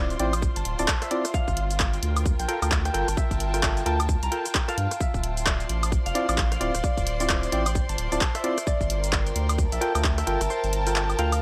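A dry, gritty hardware recording with little reverb frames this moody, soulful excerpt of two-step UK garage, swung on the sixteenths and moving between Dm9 and Gm9 chords. A deep, saturated sine sub bass sits up front, and it and a distant, bowed string section with smooth vibrato both pump with sidechain compression. Hollow, dark organ-like stabs carry chorus and tape echo, and a mellow, fingerpicked concert harp melody rings through analog delay. An overdriven analog drum machine punches out handclaps, hi-hat, rim click, shaker and woodblock, joined at 0.4 s by a tight, layered electronic kick that drops out at 10.5 s.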